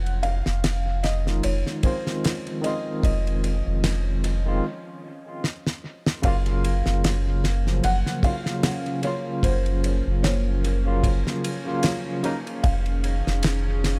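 Melancholic and brooding, this trip hop excerpt moves at 75 BPM in 4/4 with a light swing on the sixteenths, cut from a longer piece. A felt-muted upright piano carries the melody, its tone soft, boxy and intimate with audible action noise and a tape echo trailing behind, while a deep, round dub sub bass sits up front beneath it. A damped 70s drum kit with a tight kick, fat snare and ride cymbal sounds dry and rolled-off on top, colored by analog delay, and it breaks off briefly before a drum fill leads into a second section on Gbmaj7 at 6.2 seconds. A barky, lightly overdriven tine electric piano enters at 1.2 seconds with tremolo and tape echo through a combo amp, and a warbling, nostalgic, lo-fi pad with chorus arrives in the background at 6.8 seconds. Underneath it all, a very quiet, tense, string-like drone with vibrato hovers throughout, and the whole mix is soaked in echo and a small room reverb.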